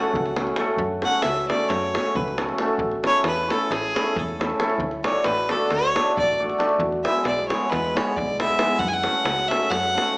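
Balkan folk in the manner of a wedding band, this restless, virtuosic fragment in 9/8 features a clear, nasal fiddle carrying the melody as a solo from 0.8 seconds over shimmering hammered cimbalom, a tight davul and a snappy, metallic-edged FM bass, moving through F#m, A, D and E in a moderate recital hall reverb with a small-speaker sound.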